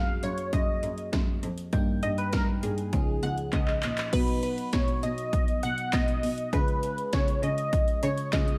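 Driving yet melancholic, this synth-pop excerpt moves at 100 BPM in a straight 4/4, cut from a longer piece. A punchy, detuned sawtooth polysynth carries the melody up front, its funky comp colored by a filter pluck, a moving notch, chorus and tape echo. Beneath it, a glassy FM electric piano with a bell-like attack and a noise layer supplies accompaniment, its decaying tones treated with chorus, phaser and tape echo. A distant, earthy cello, bowed by one player with light vibrato and a nasal edge, holds down the bass line. The 80s electronic pad drums enter at 0.2 seconds with a punchy kick, gated snare, metallic hi-hats, handclaps and crash cymbal, overdriven and up front, with a fill from 3.5 to 4.1 seconds leading into a new section as the harmony shifts from F#add9 toward B and C#. Spring reverb and digital ambience give the whole echo-heavy mix a spacious sheen.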